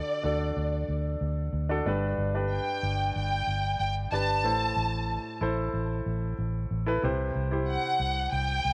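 A lush, bowed violin section carries the melody from the opening moment, its expressive vibrato and soft attack set over a clear, polished baby grand piano playing accompaniment. At 0.2 s a vintage fingered electric bass joins underneath, its foam-muted tone dark, round and punchy in the low register. This is an anthemic, warm-hearted pop passage in G major at 93 BPM in a straight 4/4, tuned slightly high to A4 = 444 Hz. The harmony moves from D to G, then to Am and C across the short fragment. A moderate plate reverb with a long tail adds a glossy sheen, and all three parts continue together to the cut at 8.7 s.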